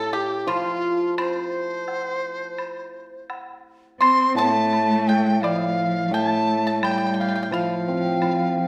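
Set in a reverberant recital hall, this short cut from a longer piece is pastoral, graceful Chinese chamber music at 85 BPM in a straight 4/4. A large bamboo dizi carries the melody up front, its pure tone edged by a buzzing membrane and shaded with vibrato and tongued notes. A dry, percussive pipa played with fingerpicks adds a second line over the shimmering, ringing hammered dulcimer and an acoustic woodblock, and at 4.0 seconds a distant bowed cello joins as another second line, warm and expressive with vibrato and portamento.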